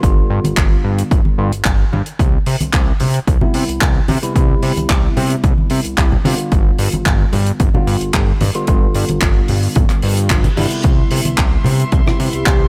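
A punchy, roomy studio sound frames this sunny, groovy nu-disco excerpt at 111 BPM in C major, moving between G7 and Cmaj7. An overdriven electronic kick sits up front beside a fat, detuned sawtooth analog bass with tube saturation and filter sweeps, while a dry, tight funk kit adds handclaps, hi-hat and rim clicks, and damped, low-tuned congas murmur in the background. A clean tine electric piano pulses through phaser and dub echo; a reverse cymbal at 10.3 seconds ushers in dark, bowed chamber strings at 10.8 seconds, and a round, octave-layered synth lead with chorus and tremolo appears at 12.1 seconds.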